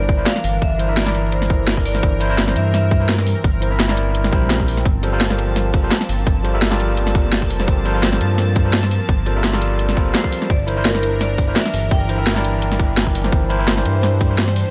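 Swung sixteenths drive this melancholic, lush liquid drum and bass excerpt, where a tight, overdriven electronic kick and a layered kit with cracking snare, bright hats and ride sit up front beside a dark, gliding sawtooth bass, while a barky, gritty tine electric piano through a combo amp and a thick, airy detuned pad with chorus, phaser and sidechain pumping carry chords moving from C9/G to Gm11 and back, a brief electronic swell sounds in the background at 4.3 seconds, and a ringing, metallic vibraphone with fast motor vibrato and digital delay plays its melody from the background at the opening and again from 10.2 seconds.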